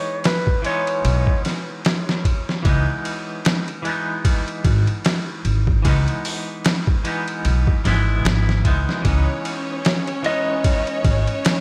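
A woody, pizzicato upright bass sits up front on gut strings, entering at 1.0 seconds and anchoring this hypnotic, smoky trip hop excerpt in C# minor at 75 BPM, with a lightly swung 16th-note feel over a single C#m9 chord. Alongside it, a sampler-style drum kit of kick, snare, hi-hat and ride sounds pitched down, compressed and gritty, with a thumpy kick, a medium-tuned snare and a tape-warm character from its re-recording in a small room. A bright, twangy clean electric guitar plays picked accompaniment throughout, coloured by tremolo and tape echo. A clean lap steel guitar carries the melody with slide and volume swells, its fingered tone roughened by vintage 12-bit sampler grit and tape echo; it sounds briefly at the start and returns at 10.3 seconds. From 9.0 seconds a lush, bowed symphonic violin section adds sustained chords with vibrato and a smooth, focused top, all in a dry, close sound with little reverb.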